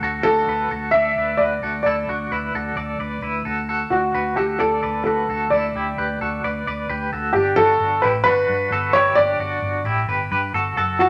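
A dark, slightly detuned upright piano with audible action noise carries the melody up front over twangy, bright clean electric guitar arpeggios with tremolo and a round, foam-muted vintage bass in this nostalgic, breezy jangly indie pop excerpt at 131 BPM, bathed in a large studio reverb as the chords move from D toward Gmaj7 at 7.4 seconds.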